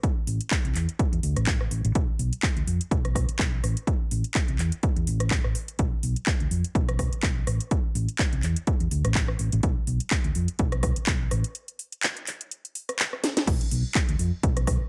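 A punchy, overdriven electronic kick drives this filtered disco house excerpt in A minor at 125 BPM alongside an overdriven house kit of cracking snare, metallic hats, handclaps, rim click and crash cymbal, with sidechain pumping on the hats and cymbals. From 0.3 seconds a dark, round hollow-body electric bass, low-pass filtered and pumping, grooves between A1 and F2 with a swung sixteenth feel that lends a sensual edge. A break at 11.6 seconds gives way to a drum fill at 13.2 and a drop at 13.5, all in a dry, up-front mix.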